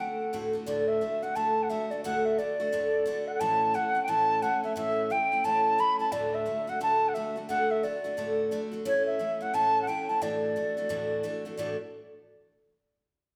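Rollicking and bright, this swung Celtic hornpipe excerpt in D major at 176 BPM sets a pure, mellow wooden flute carrying the tongued, vibrato-touched melody over a full-bodied picked steel-string acoustic guitar accompaniment with audible finger squeak, both up front in a reverberant recital hall as the harmony moves between D and A before settling on Dadd9 at 10.2 seconds.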